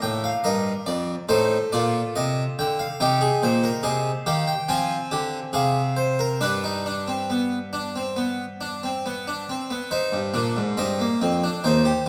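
A close-miked, plucked harpsichord of the French type, full-bodied with two sets of strings, sits up front within a recital hall's resonant reverb. This solemn, contemplative baroque-style four-part fugue moves at 70 BPM in 4/4, settling into C minor at 3.0 s as the solo harpsichord spans a range from Eb2 to Ab5. The short passage, cut from a longer piece, turns to a new section at 9.9 s, landing back on C minor before ending at 12.1 s.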